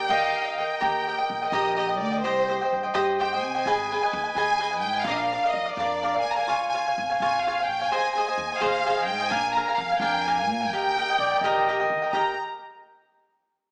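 Festive and romantic, this mariachi-style Mexican folk excerpt moves in a straight 6/8 at 85 BPM in Eb major, with a lush, vibrato-rich violin section carrying the melody up front over crisp, picked cavaquinho and a woody, thumpy pizzicato upright bass. A clear, distant trumpet in classical style adds a second line only briefly, at the very start and again from 11.2 seconds, as the harmony passes through Cm, Abm, Db and Bb7 before returning home. The whole take sits in a wet recital-hall reverb yet comes across with a small-speaker sound.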